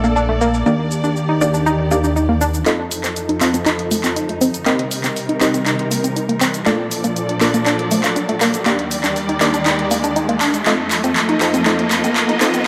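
A bittersweet, emotional progressive house passage at 120 BPM opens with several parts together: a distant, bowed string ensemble holding low-passed chords with vibrato and portamento, two detuned unison plucks with dub echo (a mellow, punchy one playing arpeggios and a brighter one in the background playing stabs), a fat, saturated analog bass, and an up-front, layered electronic drum kit of cabasa, handclaps and hi-hat. The bass stops at 2.6 s as a build-up begins, with a drum fill and filter sweeps on the strings and plucks over F7, Cm7, Bbmaj7 and Ebmaj7, and a background riser enters at 4.0 s. A lush hall reverb and dark, warm production surround the music.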